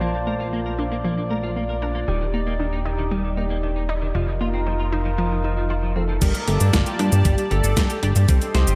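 Soaked in a lush hall reverb, this dreamy, nostalgic synthwave excerpt moves at 116 BPM in G minor with a straight, cinematic feel. A shimmering pulse-width pad holds sustained chords over a glossy, up-front synth bass, both pumping from sidechain compression, while a round analog pluck spins arpeggios through chorus, gritty 12-bit sampler character, diffuse ambient delay and a filter sweep. A clean, picked electric guitar plays a compressed riff, wrapped in ensemble chorus and ambient delay, as the harmony moves from Bbmaj7 through Ebmaj7 to F7sus4. At 6.0 seconds a dark, brassy synth lead enters in the background with vibrato and delay, and from 6.2 seconds a very quiet, warbling FM bell adds a gentle second line. At 6.2 seconds the drums also arrive, with a thumpy overdriven kick and a sampler-style kit of medium-tuned snare, hi-hat, cabasa and crash cymbal, re-recorded in a large room, as the chords land on Gmadd9.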